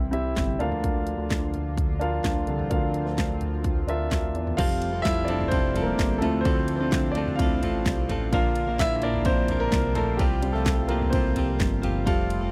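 A dry, close 1970s-style studio sound frames this hopeful, piano-driven pop cut from a longer piece, moving at 128 BPM in a straight 4/4 from C and Bb into Fadd9, Dm7, Bb and Csus4. An up-front grand piano carries the accompaniment over a glossy, nasal chorused synth bass, a very quiet, shimmering pulse-width pad holding sustained chords, and a punchy, layered electronic pop kit with fat snare, handclaps, hi-hat, toms, crash and ride. At 4.6 seconds the piano takes a solo as a clean, compressed, direct-recorded electric guitar enters with a picked riff that runs to the end at 12.5 seconds.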